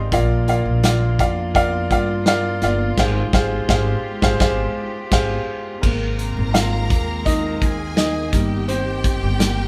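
Recorded as a band playing live in one room with moderate studio reverb, this piano-driven pop cut from a longer piece feels anthemic and uplifting. A clear, boxy upright piano sits up front over woody pizzicato upright bass on gut strings, a loose indie drum kit with a punchy kick and dark cymbals, and a reedy, period-style string section holding sustained chords in the background. The band hits accents from 3.0 s, and at 5.8 s the piano takes a solo as a lush violin section enters with an expressive second line full of vibrato.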